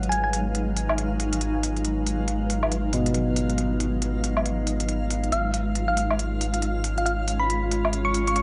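Melancholic and wistful, this future garage excerpt at 138 BPM swings lightly in G# dorian over a G#m7 that moves to C#/G# at 5.3 seconds. A muffled, felt-muted upright piano with audible action noise, 12-bit sampler grit and delay accompanies until 5.3 seconds. Around it sit a blurred, evolving granular cloud pad, a round sine sub bass and crisp, up-front electronic hi-hats with woodblock, while a reversed, detuned swelling texture drifts in the background. A tine-like, chorused thumb-piano-style synth pluck with delay flickers at 0.1 seconds and then carries the melody from 5.3 seconds, all wrapped in a moderate stage reverb with vinyl crackle and a dulled top end.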